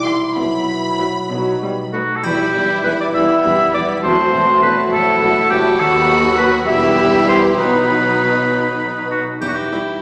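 In a 6/8 with uneven beats, this playful, whimsical film cue moves with a magical, sneaky air over a wet scoring-stage reverb, heard from further back through a small-speaker sound. A focused violin section sings the melody high above a clear second violin line, a smooth viola accompaniment, sustained French horn chords, ringing thumb-plucked harp arpeggios, and a bass of bowed cellos and lush double basses in the background. A distant, roomy oboe enters up front at 1.9 seconds with a second line, while a bright triangle sparkles briefly from 2.2 seconds as the harmony turns from B toward E minor.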